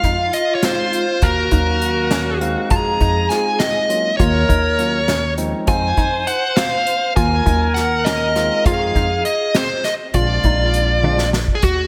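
Progressive instrumental band music in an uneven 5/8 meter, this tense, driving excerpt runs at 202 BPM in eighths and sits in Eb dorian, cycling between Fm7 and Ebm7 before turning to Bb7 near the end. A dark, overdriven lead guitar carries the melody up front, picked with a smooth edge and a slapback echo. Beneath it, an alto saxophone with vibrato plays a second line in a distant, roomy, classical style, its tone touched by slapback echo and delay. A barky, bright tine electric piano supplies clean, direct accompaniment, while a hollow, bouncy square-wave pluck with detuning, chorus and phaser adds background arpeggios. Woody pizzicato upright bass on steel strings and an airy, polished acoustic drum kit played with bundle sticks hold the foundation, with a drum fill from 11.0 to 11.6 seconds. A lush hall reverb gives the whole a big arena sound.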